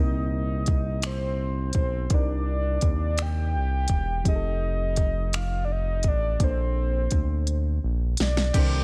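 Slow six-eight R&B in C dorian, moving at 56 BPM with a late-night, yearning mood, in a short cut from a longer piece. A soft, octave-layered synth lead carries the melody between C5 and G5, its round, detuned tone thickened by a sub octave and colored with chorus and vibrato. Beneath it, a reedy, worn electric piano sits in the background, slightly out of tune, while a smooth sawtooth-and-triangle synth bass holds the low end up front with a mellow, sustained tone. The drum kit enters at 0.7 seconds with a soft kick, fat snare, smooth hats, finger snaps and crash, carrying a vintage 12-bit sampler grit and a tape-warm character, and it plays a fill from 7.5 to 8.5 seconds. The harmony moves from Cm9 to F9 and then Bbmaj9, and a jazz-style horn section punches in with brief stabs at 8.5 seconds, all with very little reverb.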